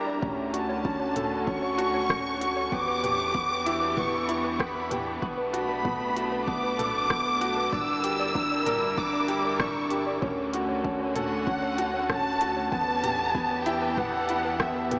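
Piano and strings electronica in D major at 96 BPM, tender and luminous, with a lush violin section singing the melody up front over muted, veiled strings and a round analog bass that both pump with the sidechain, a woody, slightly detuned upright piano riff with audible action noise, a faint warbling lo-fi pluck tracing arpeggios, an overdriven deep kick and crisp background hats, rim clicks and toms, all soaked in a huge dreamy reverb with a small-speaker sound as chords move from Dmaj7 through Em7, Bm7 and Gm6.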